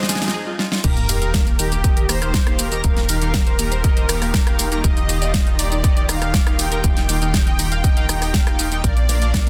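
A dense, heavily limited progressive house mix in digital ambience carries a hopeful, euphoric mood: a smooth, detuned supersaw melody rides over veiled, con sordino studio strings holding lush chords in the background, a tight, detuned sequenced synth plays chorused arpeggios, and glossy, retro polysynth stabs shimmer with pulse-width movement, all pumping against the sidechain, while a pop drum kit with a fat snare, crash, hi-hat, rim click and shaker drives from the start, a background riser and sub drop run until 2.8 seconds, a dark, plucky sequencer bass and a punchy, layered electronic kick arrive with the drop at 0.8 seconds, and faint cowbell and congas appear only at 9.1 seconds.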